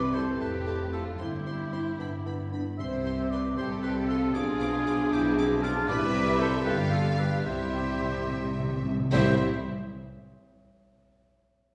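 Swaying in a rubato 6/8 at 71-79 dotted-quarter beats per minute, this quick, graceful and cheerful classical-period orchestral movement in C major sets a rich violin section singing the high melody with portamento and vibrato over second lines from airy flutes, a background violin section, a soft-attacked oboe and a distant clarinet, while a very quiet viola section and a dark bassoon fill the accompaniment, a mellow horn section sustains chords, cellos and a smooth double bass section anchor the bass, and round, dry soft-mallet timpani drop out after 0.4 s, return at 2.8 s and play a fill from 7.5 s, heard in a reverberant hall with faint mains hum.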